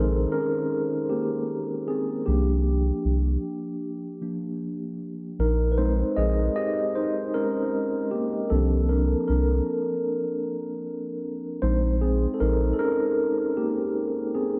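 A dreamy, reverb-soaked mix sits in a lush hall with a long 2.4-second tail, giving this short cut from a longer lo-fi hip hop piece a hazy, melancholic glow. At 77 BPM in 4/4 with a swung sixteenth-note feel, a mellow tine electric piano carries the accompaniment up front, its clean, warm tone colored by cassette tape and heard through built-in speakers. Beneath it, a round analog bass offers a deep, dark low end, its wave-folded blend of square, sine and triangle tones speaking with a fast attack and sustained notes before it stops at 12.7 seconds. The piano then plays alone to the close at 14.6 seconds. The harmony drifts between Bb9sus4 and C9sus4, an unresolved suspended sway that keeps the mood wistful and suspended in haze.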